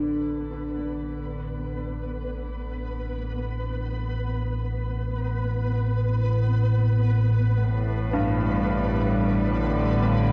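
Soaked in a huge, cavernous reverb and the warble of worn cassette tape, this ominous, desolate dark ambient drone in free time fades in on a deep, rumbling, detuned synth drone and a flickering, grainy granular texture, while a warm grand piano's arpeggios drift through diffuse delay and shimmer reverb and a reedy, gut-string chamber cello section enters at 7.6 seconds with sustained chords over an Asus2 harmony.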